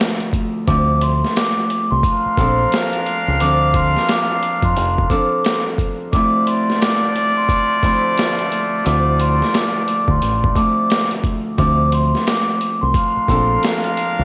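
Moody and dark, this boom-bap hip-hop excerpt sits at 88 BPM in 4/4 with a swung sixteenth-note feel, cut from a longer piece and moving between Dm7 and Bbmaj7. A sampler-style drum kit, compressed and pitched down, lays a gritty foundation of thumpy kick, high-tuned snare and hi-hat, re-recorded in a large room yet kept up front. A bright, fingerpicked Celtic harp rings through the accompaniment from the start, while a tight muted trumpet section with a nasal straight-mute tone and soft attack adds classical-style stabs trailed by tape echo. After a short break, a deep dub fingered electric bass enters at 0.7 seconds, round and up front, and a mellow vibraphone played with soft mallets, motor off, carries a smooth metallic melody high in its register until 13.6 seconds. Cassette tape colours the harp, trumpets, vibraphone and drums, and a small room ambience gives the whole a homespun, lo-fi character.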